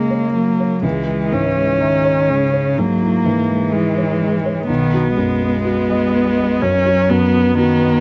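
A single bowed viola sits up front in this neoclassical passage for piano and strings, its focused tone carrying vibrato and a smooth top. Beneath it, a lone cello plays a second line with close, expressive bowing, its portamento lending the music a sense of longing. A felt-muted upright piano supplies soft, mellow accompaniment across a broad span from the deep bass to the upper middle, sounding intimate and natural. The unhurried rubato feel lets the harmony drift from F#add9 to C#m and then settle on B at 4.7 seconds, all three parts playing throughout. Moderate studio reverb and a rough home-demo mix frame this warm, reflective fragment, cut from a longer piece.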